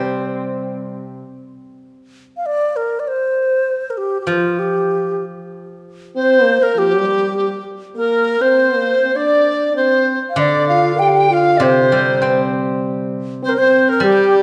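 A low xiao with a reedy, airy tone and vibrato carries the melody in this graceful, wistful excerpt of Chinese traditional chamber music, moving in a rubato 2/4 at 98 BPM. A steel-string zither played with fingerpicks adds silvery, ringing accompaniment in short passages, and at 6.2 seconds a large dizi with a buzzing membrane and a mellow French horn with light vibrato enter together as second lines. A moderate concert hall reverb gives the ensemble a spacious setting.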